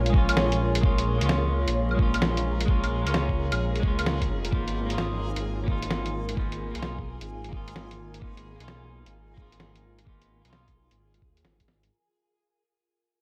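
A menacing, saturated detuned saw bass sits up front with a filter swell, pumping against a thumpy, muffled kick and a compressed lo-fi sampler-style kit of claves, hi-hat and snare in this melancholic, rainy future garage excerpt at 130 BPM in G# dorian, swung on the 16ths. A clean, picked electric guitar with spring reverb and tape echo plays accompaniment until 11.2 seconds, while an ethereal, airy pad with ensemble chorus and phaser holds sustained chords over A#m7 and then G#m69 at 4.5 seconds. A bright, reversed granular texture drifts in the background from 0.3 seconds, and the whole passage sits in a moderate recital hall reverb with vinyl crackle as it fades out.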